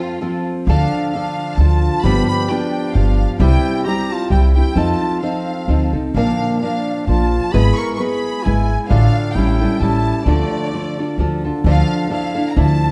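A violin section, trumpet and nylon-string guitar open together on this proud, romantic mariachi passage in a swinging triple metre, cut from a longer piece, with a woody, thumpy pizzicato upright bass joining at 0.7 seconds. The clear, lush violins carry the melody with vibrato while the mellow, soft-attack trumpet plays a classical-style second line until 11.1 seconds, over fingerpicked guitar accompaniment complete with finger squeak. The dark production sits in a moderate recital-hall reverb, and the harmony moves through a minor-key progression to settle on a Dmadd9 chord at 11.6 seconds.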